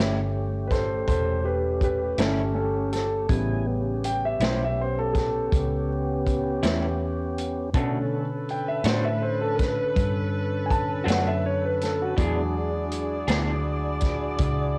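A home cassette recording with small-room ambience and light reverb carries this laid-back, rollicking slow blues at 54 BPM in 12/8 and A mixolydian, where an intimate concert grand piano with audible action noise and deep bass takes the solo over a punchy, up-front vintage drum kit, a dark, foam-muted fingered electric bass, a mellow tonewheel organ holding chords through a slow rotary speaker, and a slightly broken-up electric guitar with harmonic tremolo through a small old amp, while a jazz-style saxophone section with vibrato adds sustained chords from 7.7 s.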